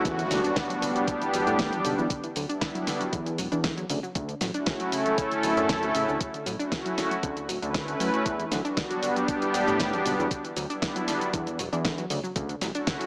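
Sleek and groovy, this nu-disco excerpt lands straight on a drop. An up-front analog pad with a smooth, warbling vintage character holds the chords, moving between Em9 and Dmaj7, treated with chorus, tape echo and sidechain pumping. Behind it, a lush, punchy unison pluck spins arpeggios in the background, also pumping and trailed by tape echo. A fat, thick, detuned analog bass anchors the low end with a filter sweep, while a thumpy, sampler-style electronic kick and a layered pop kit of fat snare, hi-hat and cabasa drive the groove. A very quiet electronic impact marks the opening 2.1 seconds, and the whole mix sits in light reverb with a small-speaker flavour.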